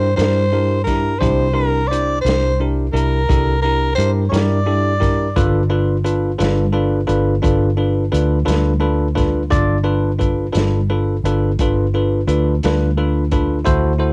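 A growling tenor saxophone leads this swaggering, rollicking slow blues excerpt, its raspy, breathy tone and scooped notes carrying the jazz-style solo up front until it drops out at 5.7 seconds. The tune moves at 58 BPM in a straight 12/8 feel in G mixolydian, with the harmony shifting from C7 to G7 at 5.4 seconds. A barky tine electric piano supplies bell-like, bright accompaniment throughout, treated with lush chorus and plate reverb. Underneath, a vintage foam-muted fingered electric bass sits up front with a dark, round, amped sound. A vintage acoustic drum kit of hi-hat, kick drum and snare enters at 0.2 seconds, sounding muffled and lo-fi in a small room, with a punchy kick, a medium-tuned snare and a rolled-off top. The saxophone carries a cassette tape character, and the whole home cassette recording has a light reverb.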